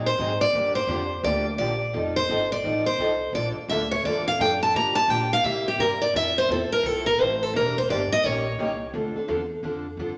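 Fiery, swinging jazz manouche cut from a longer piece, with a bright, up-front steel-string acoustic guitar taking a solo from 0.0 to 8.9 s, complete with finger squeak, over a dark, parlour-style steel-string guitar, a fresh-stringed swing-style guitar set boxy in the background, and a woody, thumpy pizzicato upright bass that carries on until 10.2 s, all inside a wet, large studio reverb.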